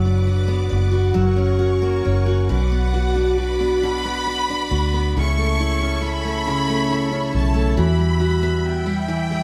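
A dark, round electric bass, muted and punchy, sits up front in this aching, melancholic pop ballad in a straight six-eight feel. Close beside it, a picked steel-string acoustic guitar lays down warm accompaniment, while a bright, lush string section holds bowed chords with vibrato lower in the mix. At 2.5 seconds a rich violin section enters with an expressive second line high above, its close, bowed tone carried by tape echo. The harmony moves from Bm/F# through F# and Bm to A/C#, arriving on Emadd9 near the close of this fragment cut from a longer piece. The band plays live together in one room, wrapped in a moderate studio ambience.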